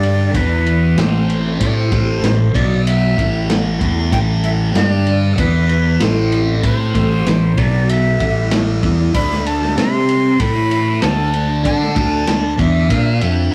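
Mysterious and hypnotic, this psychedelic rock excerpt from a longer piece rides a straight 4/4 groove, with a thick, double-tracked fuzz guitar riff out front, soaked in distortion and phaser, over a round, dark fingered electric bass. A breathy, reedy jazz flute with a crisp chiff and vibrato carries the melody, while a very quiet vintage string machine voicing violas holds soft, sawtooth-edged sustained chords behind it. The muffled vintage drum kit of punchy kick, medium-tuned snare and dark ride cymbal sits in a small, lo-fi room, and the whole track has the rough, saturated feel of a rehearsal-room recording.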